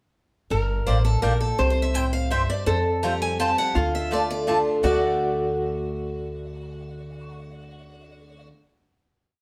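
A brief, driving and rustic bluegrass piece in 3/4 at 166 BPM opens at 0.5 seconds with a full-bodied dreadnought guitar alternating bass and strum with bass runs, a growly, thumpy upright bass up front playing root and fifth with walk-ups, and a nasal, metallic slide resonator drawing a long guide-tone line. A bright archtop guitar then enters at 0.9 seconds with a running eighth-note fiddle tune complete with finger squeak, and a round mandolin chops the off-beats. Together they move through Gm, C, Fadd9 and Dm to a final D chord at 4.8 seconds in a moderate stone room.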